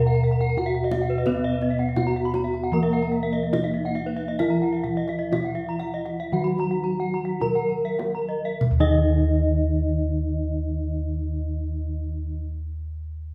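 A hypnotic, brilliant stretch of Balinese gamelan opens with a mellow, padded-mallet bronze metallophone carrying the melody over round, beating bossed gongs, which sit close and up front in the bass. Two more metallophones play ringing arpeggios with horn mallets, one boxy and the other bright and airy, all with the shimmering beats of paired tuning, while a tight, soft-handed kendang keeps time until 9.2 s. A lower accompanying metallophone joins at 1.3 s as the 4/4 pulse, somewhere between 48 and 87 BPM, slows until a new section arrives at 8.6 s, all set in a reverberant recital hall.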